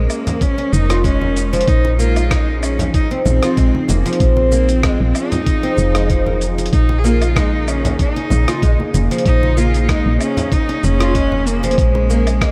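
Mystical and earthy, this organic downtempo excerpt sets a rich, bowed cello melody with vibrato and tape echo over a warbling, lo-fi sawtooth pad that pumps from the sidechain, a dark, woody FM bass with tube saturation sitting up front, a gritty, dusty soul sampler-style kit of hi-hat, rim click, shaker and woodblock beside a thumpy electronic kick, very quiet ringing congas from 0.3 seconds, and plectrum-plucked, double-stringed fretless oud arpeggios with tape echo entering at 0.6 seconds, the lightly swung mix steeped in a dreamy cathedral reverb.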